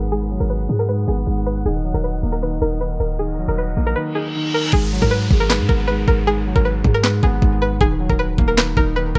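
A dark, menacing trap excerpt in half-time at 156 BPM opens on a twangy, string-like resonator pluck carrying the melody with chorus and digital delay and a filter sweep, over a mellow, shadowy grand piano and a deep, boomy 808-style bass that sits up front with a fast attack and decaying sine tone. A breathy small flute group holds sustained chords in the background, its tongued, expressive lines colored by vibrato, and it drops away at 4.7 seconds. A reverse cymbal and downlifter enter at 4.1 seconds, and at 4.7 seconds an electronic trap drum kit arrives with a knocking kick, a sharp snare and handclaps, its sound tape-warm while the hi-hats stay muted. The harmony moves between Abm7 and Ebm, tuned slightly below standard pitch at A4 = 437 Hz. The mix is dry, with a low-pass filter shading the overall sound.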